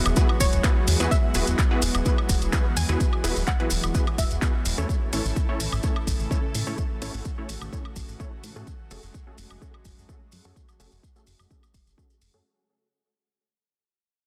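A dense, heavily limited modern master with light digital ambience frames this expansive, euphoric progressive house excerpt at 127 BPM in a straight 4/4, cut from a longer piece and fading out across its 12.5 seconds. A punchy, layered electronic kick sits up front, joined by a house kit of handclaps, bright hi-hats and woodblock, with grainy, band-limited maracas tucked in the background. A dark, funky analog bass with a fast filter pluck and moving notch pumps with sidechain compression, while a thick, warbling vintage pad with chorus holds sustained chords that breathe with the same sidechain pumping. A detuned supersaw stab, low-pass filtered and treated with delay, carries a filter sweep through the whole passage as the harmony moves from Eadd9 to A at 4.9 seconds and F#madd9 at 8.7 seconds. A lush, noisy unison pluck with delay traces a melody in the background only until 4.8 seconds.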